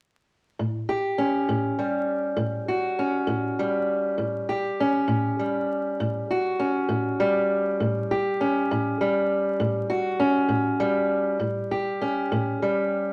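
A short cut from a longer blues piece, heard through vinyl crackle and a wet studio reverb. A lone fingerpicked ladder-braced acoustic guitar sits up front, dark, woody and boxy on old strings, playing from 0.6 to 13.1 seconds over a single A7 chord in a laid-back yet rollicking 12/8 feel.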